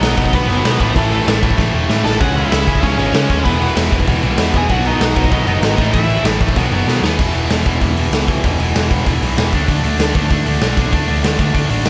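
Driven by a straight 4/4 pulse at 193 BPM, this rowdy, upbeat punk rock excerpt in E major puts a gritty, saturated raw garage drum kit up front, with a punchy kick, medium-tuned snare, crash and hi-hat in a pumping stone room and quick fills; a growly, overdriven picked bass; a cranked stack guitar and a distorted electric guitar riffing in the background; and a very quiet, double-tracked, compressed distorted guitar until 7.2 seconds, while a high-gain lead guitar carries the delayed melody until 6.2 seconds, as chords cycle through B, A, C#m and E before shifting to E5 and D5 power chords, all in a dry mix.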